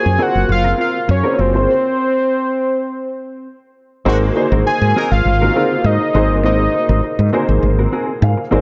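A small room with light reverb frames this glossy, upbeat pop snippet at 101 BPM with a gentle sixteenth-note swing, moving from Gbmaj9#11 through a stop at 1.7 seconds to Ab9 at 4.1 seconds. A fat analog synth lead with a sub octave, filter sweep and vibrato sings the melody up front through a digital delay, over a punchy, round fretless bass and a dark baby grand piano whose action noise and short sustain give an intimate feel under ensemble chorus. A clean, compressed electric guitar riff sits in the background, a tight, clear horn section adds a brief second line at 4.1 seconds, and the piano closes with a fill at 7.6 seconds.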